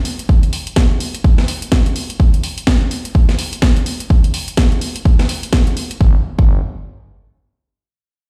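A bass house groove at 126 BPM in 4/4, with a 60% swing on the 16ths giving it a bouncy, aggressive push. The house drum kit starts at 0.1 seconds, its hi-hat and cracking snare sitting up front with a layered, tape-kissed electronic character, and a punchy electronic kick joins at 0.3 seconds. At 6.0 seconds the kit drops away as the second section begins and a growling FM bass arrives on a low G1, thick and sustained with a fast attack, tube saturation and sidechain pumping. The drums carry the sound of being replayed through a big system in a large, bare stone room, adding a hard ambient edge beneath light reverb. Cut from a longer piece, this short passage moves from a crisp drum groove into a heavy, snarling bass moment.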